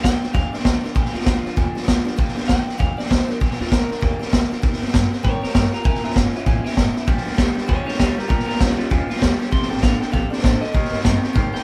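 A swung 4/4 groove at 196 BPM drives this upbeat, rowdy rockabilly excerpt in Bb major, with a vintage drum kit up front (punchy kick, medium-tuned snare and hi-hat under a rolled-off top) and a woody, thumpy pizzicato upright bass on gut strings sitting further back. A twangy, slightly broken-up electric guitar through a small old amp takes a clean solo throughout, its tone carrying a warbly pitch drift, while a picked steel-string acoustic guitar with audible finger squeak picks out chords from the background, moving from Bb6 through Eb6 and Edim7. At 7.1 s a second, lo-fi electric guitar joins with a low riff, and the whole band sounds like it is playing live together in one room with light reverb.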